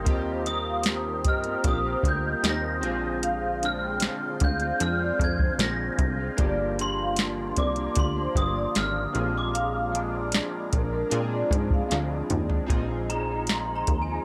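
A soft vintage rhythm box with a deep kick, crisp snare and metallic hats sits up front at 76 BPM in straight 4/4, under a punchy, funky plucky analog bass and the twangy, slightly broken-up electric guitar through a small old amp with analog chorus and vibrato. Glossy, full-bodied chorused retro synth keys and a mellow, ethereal airy pad in the background fill out this nostalgic, sunny bedroom-pop excerpt, moving from Eb6 through Gm7 to Bb7. A bell-like glockenspiel with soft plastic mallets carries the melody over a dark, smooth vibraphone line that stops at 11.9 seconds, both with slapback echo; a drum fill then leads into a short glockenspiel solo at 12.7 seconds over a Bb7sus4 chord.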